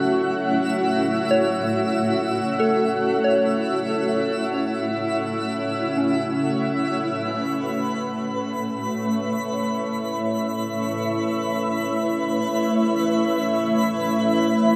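A cloudy, detuned granular pad holds sustained chords up front in this peaceful, luminous ambient piece in free time, in A major, alongside a twinkling FM granular texture with octave-up shimmer, both bathed in shimmer reverb. A soft, pure FM bell plays chorused arpeggios through diffuse delay in the background until 7.0 seconds, and at 7.7 seconds an evolving analog drone of sawtooth and pulse-width-modulated pulse waves enters with chorus. It all sits in a wet concert hall with a 2.1-second reverb tail.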